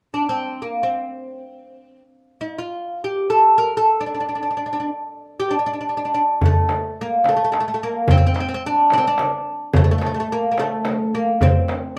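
This excerpt of a Persian modal ensemble piece opens with a solo oud, its fretless, plectrum-plucked double strings sounding mellow, woody and deep as it carries the melody up front in the mix. The mood is hypnotic and soulful, and the oud's line stays within a compact middle register. At 6.4 seconds, two percussion parts enter together: a tight, band-limited tombak with a vintage character, and a small, bright frame drum that carries a live-room feel. The frame drum drops out at 11.8 seconds, while the tombak and oud carry on to the end of the cut. The ensemble sits in a wet studio reverb, and lossy compression artefacts colour the recording.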